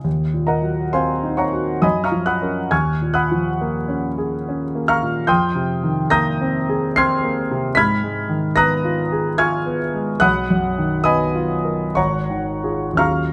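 Classical impressionist solo piano in Eb minor, this wistful, mysterious passage, cut from a longer piece, drifts in 3/4 with a free rubato between 56 and 76 BPM, with the instrument tuned to A4 = 442 Hz. A concert grand carries everything alone for 13.3 seconds, its intimate, up-front tone spanning Ab1 to C7 with deep bass and audible action noise. Close, detailed microphones and light reverb frame harmonies that move from Ebm6 through Gbmaj7, Fm11 and Bmaj7#11 before settling on Ab5 at 12.0 seconds.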